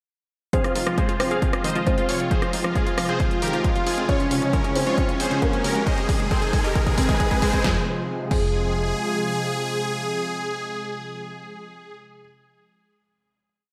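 A punchy four-on-the-floor kick and tape-warm programmed hats, rim, snare and crash drive this short, euphoric yet bittersweet uplifting trance piece, with a very quiet rolling FM bass, a bright chorused analog pluck sequence and a faint riser from 3.8 s over a drum fill that builds to the final chord at 7.6 s. Up front, huge detuned supersaw chords repeat a sixteenth-note riff in thirds and sixths with sidechain pumping, filtering and delay. They are joined by a dark, boxy grand piano repeating its own riff in octaves and cushioned by a thick, warbling unison pad. After the drums stop, the Fm final chord rings out through a dreamy, reverb-soaked hall until about 12.2 s.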